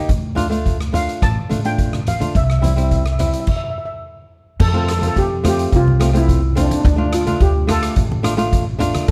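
Festive and carefree, this calypso excerpt moves at 107 BPM in a straight 4/4, sitting in F major with a dark production and little reverb. A fingerpicked acoustic flamenco guitar opens the clip on its own before an upright bass, plucked pizzicato with a woody tone, joins almost at once alongside a street-band drum kit and low-tuned, thick-skinned congas placed back in the mix. The kit sounds airy and polished, up front with a boomy kick, dark cymbals, hi-hat and rim clicks, while the congas stay close yet tucked behind it. At 0.9 seconds a lead steel pan enters with a shimmering, metallic yet mellow voice, played softly with rubber sticks, carrying the melody over chords that move from D minor to C and on to F. A stop at 3.5 seconds breaks the groove before the second section picks up at 4.6 seconds and runs until the clip is cut off.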